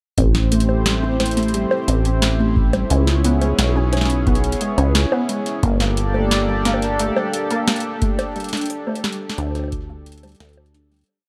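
Melancholic and eerie, this short IDM piece sets a mellow, detuned analog pad and a warbling, lo-fi pluck arpeggio looping in 11 steps that drift against the bar over a rubbery acid bass with long gliding notes, a glitched, ever-changing drum machine of crisp snare, metallic hats and bongos, and a broken electronic kick that drops out at 9.9 seconds, all in a dark, dry production that fades out from 7.4 seconds.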